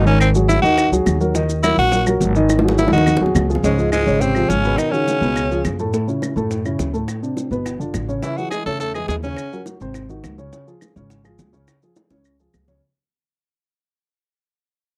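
Afro-Cuban jazz with a danceable, sophisticated feel, captured in a dry, close studio sound in a 1970s style and cut from a longer piece. A raspy, growling tenor saxophone leads up front over thumpy gut-string upright bass and a dark, intimate baby grand piano with audible action noise, while round, low-tuned bongos and woody claves sit in the background and grainy maracas play close by. From 3.6 seconds a breathy, subtoned second tenor saxophone plays a lower line in the background as the track fades out.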